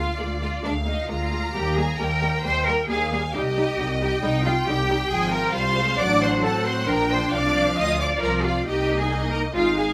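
A focused, up-front cello section carries the bass alongside a bowed double bass section in this spirited, lively classical-period movement for string orchestra at a quick 135 BPM with rubato, while two distant, intense violin sections sing the melody and a second line above smooth, warm violas in accompaniment, every part vibrato-rich and lush in moderate studio reverb, as the chords move from Bb7/D to Cm7 in a passage cut from a longer piece.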